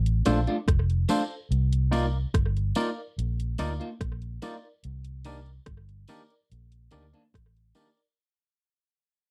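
A punchy, layered electronic house kit of kick, bright hi-hat and rim click sets a straight 72 BPM lovers rock reggae groove in C dorian. It carries a dark, round, foam-muted vintage fingered electric bass, slightly broken-up picked guitar stabs through a small old amp, a barky, lightly overdriven tine electric piano with slapback echo, and a distant tambourine with its own slapback. Over chords moving from Bbmaj7 to Cm11 and Cm9, this smooth, bittersweet, dry and close 1970s-style fragment fades out across its 8.2 seconds.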